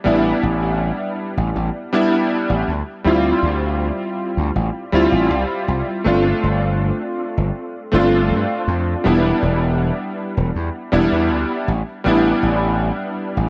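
A clear, clangy electric grand piano with chorused unisons and tape echo carries the chords of this hazy, woozy vaporwave excerpt at 80 BPM in D dorian, moving through A9sus4, Dm11, G7sus4 and Em7 before returning to A9sus4, while a gritty, overdriven slap bass with tube saturation sits up front beneath it, the mix wrapped in light digital reverb and a dark cassette-tape sheen.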